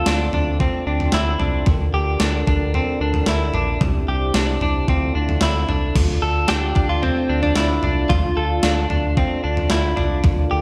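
Melancholic and hazy, this dream pop excerpt sets an up-front clean electric guitar playing arpeggios through lush chorus and delay over a deep, round analog bass and a distant, dark French horn section holding sustained chords with light vibrato. A gated 80s digital drum machine drives it with a thumpy kick, gated reverb snare, crash and toms, all roughened by overdrive. A very quiet, mellow vibraphone with soft mallets shimmers from 0.9 to 6.2 s, and a scooped, direct-recorded guitar melody with subtle chorus, heard briefly at the very start, returns at 6.5 s, the whole mix soaked in a dreamy plate reverb.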